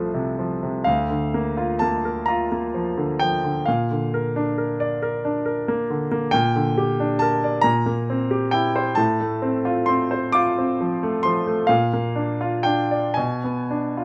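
In a 12/8 with free rubato at a slow 35-46 BPM, counted in dotted quarters, this tender, serene romantic nocturne for solo concert grand piano, cut from a longer piece and tuned to A4 = 442 Hz, begins in Bb major and turns toward F major from 6.3 s, its polished, up-front tone spanning C2 to D6 with a deep bass and short sustain, captured by close, detailed microphones in a light reverb.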